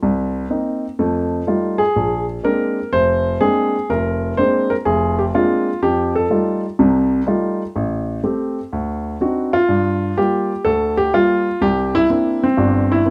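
A grand piano carries this solo jazz piece from 0.0 to 13.1 s, placed up front with an intimate, natural tone and the audible noise of its action. The mood is warm and relaxed, set at 124 BPM in 4/4 with a 68% swing on the eighth notes, in F mixolydian with tuning at A4 = 441 Hz. The piano spans F1 to C5, moving through Cm7, F9 and Bb9 before returning to F9, then on to Am7, D7b9, Gm7 and C9. Light reverb gives the room a gentle sense of space. The passage is cut from a longer piece.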